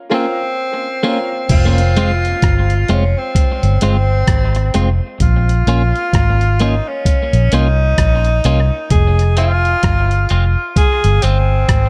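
Spacious and hypnotic, this dub reggae excerpt in F minor moves at 65 BPM with a swung feel, opening on a 1.5-second break where a distant, roomy tenor saxophone with light vibrato, picked clean electric guitar and a bright, woody, slightly detuned upright piano all sound through tape echo, the piano playing stabs only until 1.3 seconds. At 1.5 seconds a dark, round, foam-muted fingered bass arrives up front alongside a gritty, compressed sampler-style drum kit with a thumpy kick, rim clicks, hi-hat and crash, re-recorded in a large room. From 5.2 seconds a filter sweep runs over the high-passed guitar as the chords shift between Bbm and Fm beneath the saxophone melody in an echo-heavy mix with light reverb.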